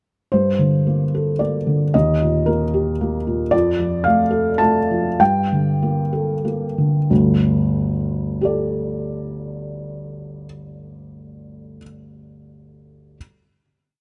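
A felt-muted upright piano opens this brief neoclassical minimalist piece at 0.3 seconds, playing alone with a single-line melody over rocking broken chords in a rubato 3/4. Its thick-felt, mellow tone sits up front in light reverb, spanning a low bass to the upper middle of the keyboard, and the mood is wistful and intimate. The harmony moves from Gmadd9 through Eb, and from about 2.7 seconds the playing slows as it passes through Dm/F back to Gmadd9, then settles on a lingering Gsus2 at 7.1 seconds that rings until 13.2 seconds.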